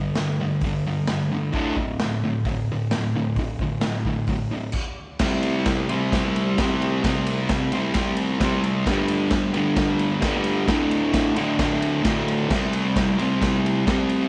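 This raw, up-front garage rock recording sits in a light studio reverb, cut from a longer piece with a rowdy, straight-ahead drive in four. A bright, fuzz-drenched electric guitar, picked and double-tracked, carries the riff through G5, D5 and C5 power chords in its low-to-middle range. The acoustic drum kit is saturated and gritty, with vintage 12-bit sampler crunch and a rolled-off top. Its punchy kick, medium-tuned snare, crash, ride and hi-hat ring out in a pumping stone room. The band halts briefly at 4.8 seconds, then charges back in at 5.2 seconds and pushes on until the cut at 14.3 seconds.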